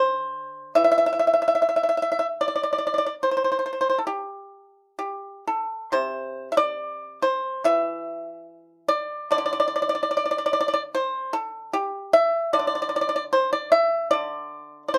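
A solo pipa, played with fingerpicks, opens this serene, flowing piece of Chinese traditional music, its dry, percussive tone sitting up front in a free, rubato feel over a loose four-beat pulse. The instrument ranges from its low register up to its upper strings, caught with light reverb as if performed live in one room. At 5.9 seconds the passage moves into a new section that carries on until the recording, cut from a longer work, ends at 15.0 seconds.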